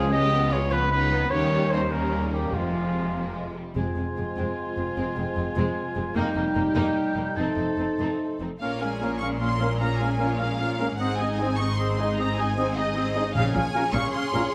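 A cinematic, heroic adventure film score in a straight 6/8 at 100 BPM, this swashbuckling passage, cut from a longer piece, opens in F minor and turns to Bb minor at 8.6 s. A close, smooth violin section carries the melody over a softer, expressive second violin line, while lush violas fill the accompaniment and rich cellos join woody double basses on the bass. A mellow, distant trumpet punctuates with stabs from the start, and timpani struck with soft mallets add round accents from 2.5 s and again near the end. At 3.8 s a vibrato-laden oboe and a roomy, background clarinet enter with second lines as a French horn section settles in with sustained chords. The chords move through Db7, Eb7 and Fm before passing to F7 and then Bbm7 and Ab. A recital hall's reverb gives the ensemble a spacious, adventurous glow.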